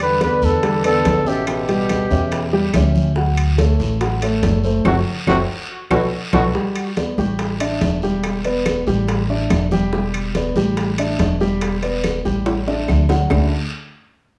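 Afro-Cuban jazz excerpt with a lively, sunny mood, where a breathy, scooped-note trumpet with vibrato carries the melody over a mellow trombone line for the first 6.4 seconds, its sound dressed in plate reverb and analog delay. A dark, deep-toned concert grand and a thumpy, gut-strung upright bass sit up front throughout, while congas, tight high-tuned bongos, ringing metal-shelled timbales, very quiet woody claves and a raspy, distant guiro fill out the percussion. A band accent from 4.9 seconds is joined by a drum fill at 5.9 seconds before the second section, and another fill arrives at 12.5 seconds just before the harmony resolves to a major ninth chord.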